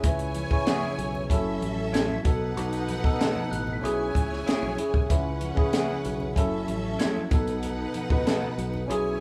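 A compact cocktail drum kit sits up front, its punchy kick, high-tuned snare and hi-hat sounding dark and smooth with a rolled-off top, driving this lush, bittersweet 1970s-style soul passage at 95 BPM in a straight 4/4. A clean tine electric piano, also up front and coloured by a phaser, carries the accompaniment over a growly, punchy fingered electric bass, while a symphonic string section adds a silky, bowed second line with soft attacks and expressive vibrato. Very quiet congas with a thick skin add gentle percussion underneath. From 0.7 seconds a slightly broken-up, lo-fi electric guitar picks a riff in the background, and at 1.9 seconds a mellow, bell-like glockenspiel played with soft plastic mallets rings high above the band. The chords move through C#m7, F#m7, B7 and E6/B before returning to C#m7, and the light reverb gives the feel of a band playing live in one room in this short cut from a longer piece.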